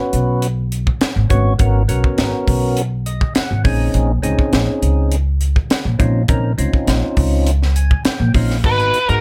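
Electric jazz fusion with a slick, driving feel, this short passage cut from a longer piece rides a straight 4/4 groove. A percussive tonewheel organ carries the harmony from the very start, its mellow, round tone marked by key click, third harmonic percussion and a touch of drive through a slow rotary speaker, and it adds fills at 2.8 and 7.5 seconds. Underneath, a woody, bright pizzicato upright bass with steel strings sits forward in the mix, alongside a crisp fusion kit of kick, snare, hi-hat and crash, with a punchy kick and high-tuned snare in a small, pumping room. The chords move from G#m11 to A#m11 and settle on G#m7 near the close. At 8.7 seconds a smooth, overdriven lead guitar enters, picked and up front, with slapback echo and plate reverb, just as the passage ends. Light reverb sits over the whole mix.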